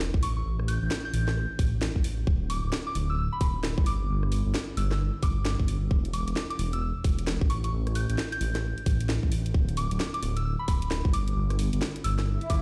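A swung two-step garage groove at 132 BPM drives this soulful, bouncy excerpt, where a tight, up-front electronic kick and a garage kit with cracking snare, rim click and hi-hat sit under a deep, rumbling detuned saw bass between D1 and A1, while a soft, pure FM bell melody with chorus and dub echo floats high above over chords moving from A7(no3) to G5 and E7(no3), all heard as if played on a big sound system in a bare stone room before an electronic swell arrives at 12.4 seconds.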